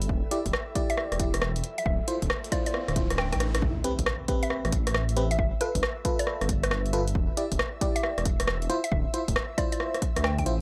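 An ethereal pad with ensemble chorus and reverb, a dark, rumbling detuned saw bass, a punchy tape-warm drum machine of swung hi-hats and rim clicks, and a very quiet, nostalgic warbly tape-like pad open this soulful, late-night two-step UK garage cut in A minor at 136 BPM, soon joined by an electronic kick, glassy FM electric piano stabs and a woody, mallet-like synth pluck melody with chorus and tape echo, as a background riser builds from 1.7 seconds into a drum fill and impact at the drop at 3.6 seconds, where the tape pad stops and the dry, gritty groove rolls on over rich ninth and seventh chords.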